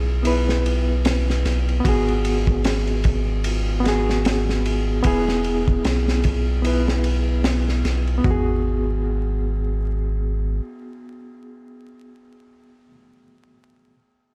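Trip hop with a smoky, dark mood and a swung 4/4 feel, cut from a longer piece and set in a dry space under a layer of vinyl crackle. A deep, round sub bass with tube saturation anchors the low end until 10.6 seconds, while a gritty breakbeat kit with a punchy kick, high-tuned snare, toms and dark ride cymbal plays until 8.5 seconds. A reedy electric piano with medium tremolo, tape echo and a filter sweep running until 8.2 seconds carries the chords from G#m7 to E and on alone to 14.0 seconds.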